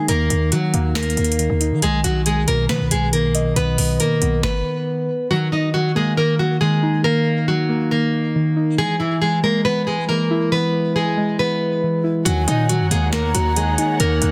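A bright, fingerpicked nylon-string guitar carries the melody from the first moment, finger squeaks audible up front, over muted, soft synth keys thickened with chorus in this dark, hard-hitting half-time trap cut. Punchy, heavy 808-style bass and a booming analog drum machine, with its deep kick, crisp snare and metallic hats, overdriven and re-recorded in a small room, arrive almost at once. The bass drops out at 4.4 seconds and the drums just after, leaving guitar and keys to carry the shifting harmony through a long stretch. At 12.3 seconds the low end and beat crash back in, joined by an airy, hollow concert flute with vibrato and a lush, woody string section sitting distant beneath everything. The sound is dry, dense and heavily limited, with digital delay trailing the guitar and flute.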